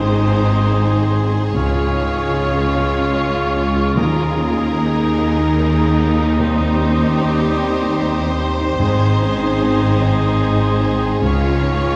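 A slow, rubato 3/4 at 74 BPM carries this uplifting, moving cinematic film-score excerpt in Ab major, where a rich, vibrato-laden violin section sings the melody while cor anglais, an airy, hollow small flute group, a second violin line and a clarinet weave secondary lines around it. Beneath them a felt-muted upright piano with audible action noise, portamento violas and distant, roomy French horns fill out the harmony, while lush cello and double bass sections anchor a bass moving from Ab through Db, Ebsus4 and Cm/Eb. Very quiet timpani touch in at the start and return from 4.0 to 10.0 seconds, all set in a dark production with a lingering concert-hall reverb.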